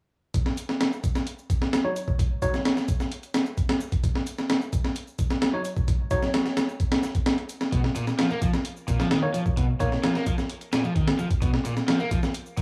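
A dry, gritty hardware recording with small room ambience and light reverb frames this swaggering breakbeat excerpt, cut from a longer piece and moving at 130 BPM in Eb minor. A compressed, sampler-style break kit sits up front from 0.3 seconds, pairing a thumpy kick with a high-tuned snare and hi-hat, while an overdriven electronic shaker, layered and re-recorded in a large room, hovers in the background. A bell-like tine electric piano drops in short, bright stabs around 1.8, 5.5 and 9.2 seconds, its clean tone roughened by vintage 12-bit sampler grit, a low-pass filter and tape echo. At 7.7 seconds an overdriven semi-hollow guitar enters up front with a picked, hollow-bodied riff carrying tape echo, as the harmony moves from Ebm7 to a rootless Bmaj7. The straight 4/4 groove and grainy textures keep the mood tough and confident through to 12.6 seconds.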